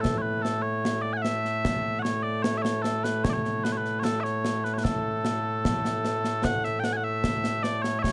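Ceremonial and proud, this short cut from a longer piece of Scottish traditional pipe music moves at 75 BPM in a straight 2/4, set in A major. Mellow small bagpipes carry the melody as a continuous, sweet solo voice up front, ranging from A2 to G#5 across the full 8.1 seconds. Concert snare drum and concert bass drum play alongside for the whole span, acoustic in character with bright cymbals and the sound of a live room. A light reverb surrounds the performance, and the music shifts into a new section at 6.4 seconds before the cut ends.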